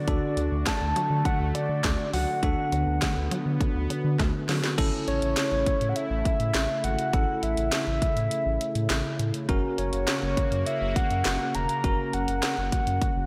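A punchy house drum kit with cracking snare, handclaps, hi-hat and crash drives this wistful yet upbeat synth-pop excerpt at 102 BPM in A major, carrying a deep, round analog bass, a soft octave-layered synth lead with vibrato, chorus and delay, a bell-like tine electric piano, a sweeping detuned pad with chorus, and a squelchy blip pluck that plays only until 4.7 s, all set in a lush hall reverb for a big arena sound, with a drum fill at 4.2 s leading the harmony from D to A and later to F#.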